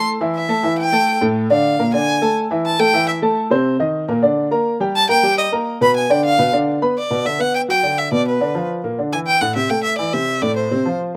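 A close, bowed violin with smooth vibrato leads this sunny, sophisticated jazz clip at a brisk 208 BPM, taking a featured solo through the first 7.0 seconds over a woody, vintage-toned upright piano accompaniment, before the harmony settles into G major on a Gmaj7 at 7.0 seconds, all set in light reverb.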